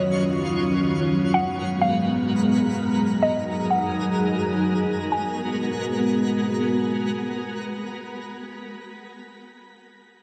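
Bathed in a moderate shimmer reverb with a 5.3-second decay and lossy compression artefacts, this spacious, hazy hip hop fragment in G# dorian floats in free time. A deep, detuned analog pad with a sub octave holds moody, full-bodied chords from D#m9 through G#m9 and F#6/9 under a filter sweep that runs to 5.1 s. Above it, a woody, round FM mallet pluck carries a mellow melody with chorus and delay until 6.5 s, while a sparkling granular texture glimmers softly in the background.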